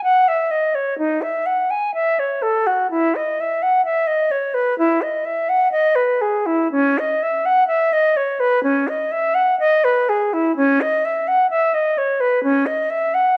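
Flexible rubato phrasing over a 4/4 metre gives this baroque-style classical fantasia a flowing, dance-like feel. A silver concert flute plays alone for the full 13.4 seconds of this passage cut from a longer piece, moving between C#4 and G#5 with a pure, metallic tone, vibrato and tongued notes. It sits up front yet distant within a dark production touched with light reverb.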